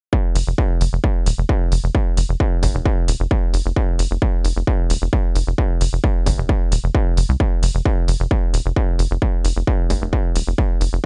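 A straight, driving 4/4 pulse anchors this intense, industrial slice of peak-time techno: a layered, distorted electronic kick sits up front from 0.1 seconds, a tight, punchy sequencer bass blending sawtooth and square tones, with a filter pluck and a moving notch, pumps with sidechain in the low register, and an analog electronic hi-hat adds overdriven grit, all set in a dry mix whose top end is rolled off.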